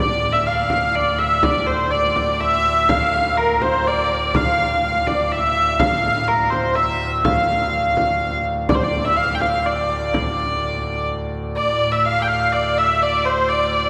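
A rich, nasal hurdy-gurdy carries the melody up front over a thick pipe-organ drone on foundation stops and a deep frame drum struck with hard hands from 0.7 to 11.5 seconds, giving this excerpt of a medieval dance in D minor at 124 BPM in 3/4 an ancient, mysterious air, all played live in one room and bathed in a wet church reverb.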